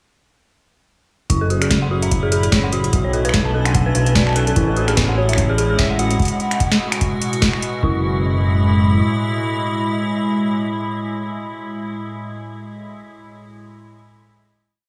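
Intricate and glitchy, this IDM piece in F# minor runs at 147 BPM with a swung 16th-note feel. A booming analog drum machine builds an ever-changing, glitched beat from crisp snare, metallic hats and finger snaps over a broken pattern from a deep electronic kick, both tape-warm and re-recorded in a large room, while a rumbling, detuned saw bass plays long gliding notes up front and an eerie, inharmonic synth bell runs a 16-step arpeggio through chorus, 12-bit sampler grit and dub echo. An icy, crystalline glass pad holds chords such as F#m9 and Bm9, a round, warbling synth lead with tremolo and tape echo drifts a free melody in the background from 5.2 seconds, and once the groove ends at 7.8 seconds the pad sustains the final F#m9 until 11.9 seconds.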